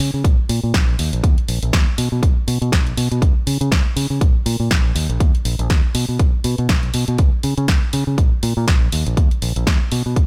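Filtered disco house at 121 BPM with a lightly swung 16th-note feel, this nostalgic, sensual fragment of a longer piece is carried by a bright, direct fingered electric bass, up front and ranging from Bb1 to Db3, with tube saturation, sidechain pumping and a low-pass filter sweep that runs through the whole passage. A punchy electronic kick enters at 0.2 seconds and sits forward in the mix, while a layered house kit of hi-hat and punchy snare plays from the start, both drum parts touched with studio reverb inside a digital ambience.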